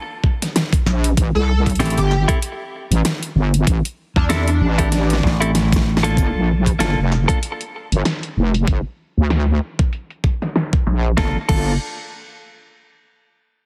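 An overdriven, knocking electronic kick opens this gritty, swaggering glitch hop cut at 0.2 s and is soon joined by a layered dubstep kit with a huge snare, bright hats and crash, a heavy, detuned wobble bass up front, a tearing oscillator-sync lead with chorus and delay that sings only until 5.3 s, scooped stabs of clean electric guitar with delay and sidechain pumping, and a punchy slap bass, riding a swung groove in a dry, squashed radio-style mix that brings a drum fill late in the drop and a filter sweep on the drums from 6.2 s.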